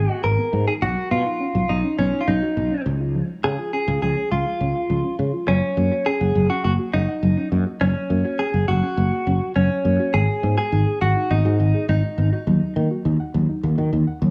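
Set in light reverb and a digital studio ambience, this bright, nostalgic synth-pop excerpt at 103 BPM places a clean, compressed electric guitar melody up front until 12.3 s, over a growly, punchy fretless electric bass and soft, round pluck arpeggios in the background; both guitar and pluck carry chorus and digital delay, while the chords move from Abm through Cbadd9, Db and Gb before shifting to Abm7 at 10.1 s and Ebm at 12.5 s.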